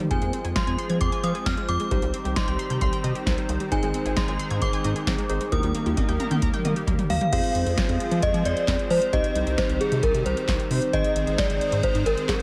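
Cool and melancholic, this synth-pop excerpt at 133 BPM in F dorian sets a chiming, inharmonic FM synth melody over a rubbery, wave-folded square bass, an up-front electro analog drum machine with a deep kick, punchy snare and metallic hats, round keys in the background, a lush detuned unison pad, and a warbling vintage pluck whose tape-echoed arpeggios drop out at 7.3 seconds after a drum fill.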